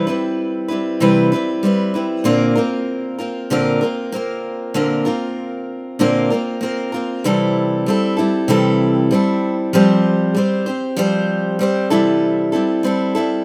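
A picked steel-string acoustic guitar plays alone and up front through this short pop excerpt, its auditorium-like body and occasional finger squeak giving it an intimate, carefree character. At a relaxed 96 BPM in a straight 4/4 feel, it moves from Cmaj7 to Bbadd9 in the opening passage, then shifts at 7.2 seconds to a second section built on C6 and Fsus2. A light reverb adds gentle space around the easy-going playing.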